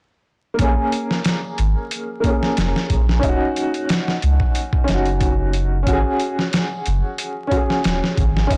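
A blown-out, overdriven recording laced with vinyl crackle and light reverb frames this short, cinematic and melancholic trip hop excerpt, cut from a longer piece. An upright piano enters at 0.5 seconds, its woody tone treated with tremolo and tape echo as it plays accompaniment between Bb3 and Ab4. A soft, deep and round dub sub bass joins at 0.6 seconds alongside a boom bap sampler-style drum kit, both sitting up front with the piano. The drums sound compressed, pitched down and gritty, with a thumpy kick, a medium-tuned snare and hi-hat carrying a tape-warm character, moving at 91 BPM in 4/4 with a slight 16th-note swing. The harmony moves from Bbm7 to Ebm7 and then to Ab7sus4 before all three parts stop at 8.6 seconds.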